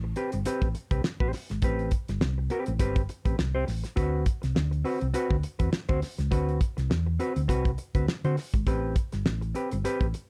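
The production is dark, with little reverb, and all three instruments sit up front. This short funk excerpt moves at 102 BPM in 4/4 with a light sixteenth-note swing, and its mood is cool and funky in A dorian. A damped 70s drum kit enters at 0.2 seconds, with a fat snare, a tight kick and hi-hat; its sound is dry and warm, with the top rolled off. Beneath it, a fingered hollow-body short-scale electric bass gives a round, amped low end, while a clean, fingered hollow-body jazz guitar plays accompaniment in the middle register. The harmony moves from Am9 to D13 at 4.0 seconds and returns to Am9 at 8.7 seconds.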